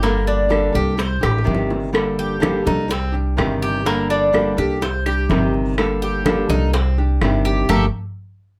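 Cuban son in a guajira vein, this danceable, warm fragment rocks between Gm(add9) and Cm(add9). Up front sit a bright, metallic Cuban tres spinning arpeggios on its doubled strings, a fingerpicked nylon-string guitar with audible finger squeak, and a dark, growly pizzicato upright bass. Further back, tight high-tuned bongos and ringing congas played with soft hands are joined by woody claves at 0.5 s, with a drum fill at 1.2 s and a full-band accent closing at 7.7 s in light reverb.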